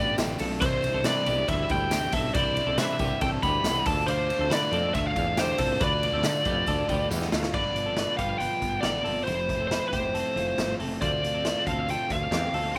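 A dry, close-sounding cut from a longer jangly indie pop track with a youthful, nostalgic mood, where a biting, overdriven lead guitar carries the melody up front over bright, clean twelve-string arpeggios, a crunchy rhythm guitar with slapback echo sitting in the background, a woody, growly fretless bass, a gritty garage drum kit in a pumping stone room that enters at 0.2 seconds, and a jingly tambourine that stops at 7.4 seconds as a drum fill carries the piece into its second section at 7.5 seconds.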